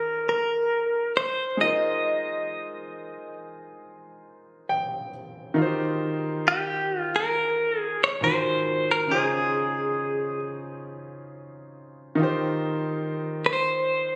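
A bright, twangy clean electric guitar carries the melody through harmonic tremolo and tape echo in this dreamy, romantic R&B excerpt at a slow 68 BPM with a light sixteenth-note swing in Eb mixolydian, while a natural-sounding baby grand piano accompanies on lush chords like Eb69, Ab13 and Dbmaj7 and adds a fill from 4.2 to 5.6 seconds, all captured on a phone in the room with studio reverb and compression.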